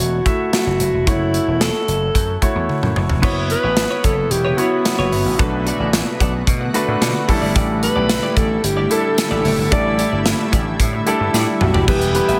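A breathy, whispered alto saxophone with tape echo carries the melody across this nostalgic yet urgent 1980s-style pop excerpt, over a clear concert grand piano with audible action noise, a punchy vintage slap bass and a polished acoustic drum kit with gated reverb that fills at 2.7 seconds, while a twangy, chorused clean electric guitar enters at 3.2 seconds, a shimmering ethereal pad arrives in the background soon after, and a jingly tambourine joins very quietly at 8.1 seconds.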